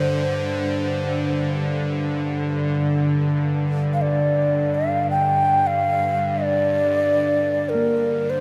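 A hollow, airy cedar flute carries the melody in G minor pentatonic, its breathy chiff and gentle vibrato trailing into a diffuse ambient delay in this haunting, spacious stretch of free-time world meditation music. Beneath it, a nasal, string-like bowed drone sustains low and tense. At 7.7 seconds a softly ringing bronze singing bowl adds a metallic shimmer, and a cathedral reverb with a 5.7-second decay opens the space around the sound.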